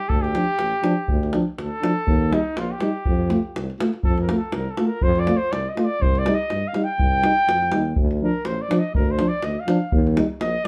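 A festive, wild Balkan brass band groove runs at 122 BPM in 2/4 with a light swing on the sixteenths, driven by a tight, close, up-front davul, in F mixolydian with chords moving from Dm through Eb, F and Cm. A warm, smooth-topped flugelhorn takes the solo from 0.0 s in a classical style, over a distant, roomy tuba bass with light vibrato and a soft attack, a dark, close-miked euphonium with its own gentle vibrato, and a second, warm, smooth-topped euphonium filling out the accompaniment. A wet studio reverb places the band further back in the room, and this short section is cut from a longer piece.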